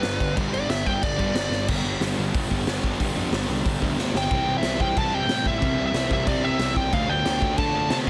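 Angry and raw, this punk rock fragment charges along at 183 BPM in a straight 4/4, moving through G, C and Dm. An up-front, smooth overdriven lead guitar opens with a short solo, drops out at 1.7 seconds and returns with its melody at 4.2 seconds, over riffs from a crunchy double-tracked guitar, a semi-hollow guitar and a dark, sludgy guitar sitting low behind a growly fuzz bass. The garage drum kit hits close and hard, its high-tuned snare, punchy kick, crash and hi-hat saturated and gritty in a bright stone room, adding a couple of fills to a dense, heavily limited modern master with little reverb.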